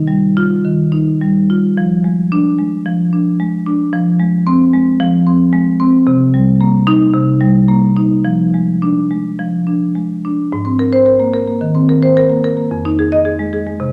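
A rubato pulse around 110 BPM in 4/4 carries this reflective, flowing contemporary classical piece for solo marimba, heard as a short excerpt cut from a longer work in F dorian that moves to Ab major at 10.5 s. The marimba, struck with medium hard mallets on rosewood bars, sounds woody and mid-forward, sitting up front as it spans F2 to Eb5 through harmonies such as Ebadd9, Fm6 and Cm7 before settling on Abadd9 and Fm7. A wet recital hall reverb of 1.4 s surrounds the instrument throughout its 13.9 seconds.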